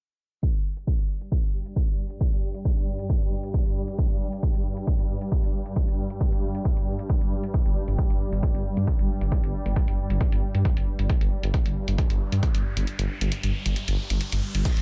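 The electronic kick drum opens at 0.4 s, punchy and up front in a small room, alongside an analog drum machine's pumping hi-hats and crash cymbal, and a swarming, detuned drone fades in beneath them from 1.2 s with built-in reverb and a sidechain pulse, all under a filter sweep in this relentless, hypnotic piece of driving peak-time techno at 135 BPM. A thick, menacing detuned saw bass enters up front at 7.7 s with sidechain pumping. An electronic riser builds from 11.7 s into a break at 12.9 s, and a very quiet brushed shaker appears in the closing moment of this dry, low-passed excerpt cut from a longer piece.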